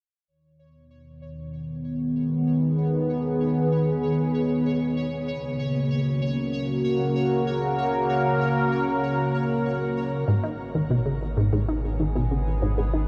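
Mysterious and cosmic, this ambient, sequencer-driven space music moves at 96 BPM in a straight 4/4, set in G# minor and cut from a longer piece. A sweeping resonant pad opens at 0.3 seconds with sustained chords from G#m to F#, its bright, evolving tone undergoing a filter sweep and washed in chorus and shimmer reverb. Shortly after, a pulsing gated texture holds a high C#5, tempo-synced and sitting far back in the mix, fading in through the first section with its own chorus and shimmer. At 10.3 seconds the music returns to G#m as a juicy, squelchy blip pluck enters with an up-front riff, coloured by phaser, cassette-tape grit and delay. A round, nasal analog bass joins at the same moment on a deep G#1. The whole mix is dreamy and soaked in a huge reverb with a long 8.0-second tail.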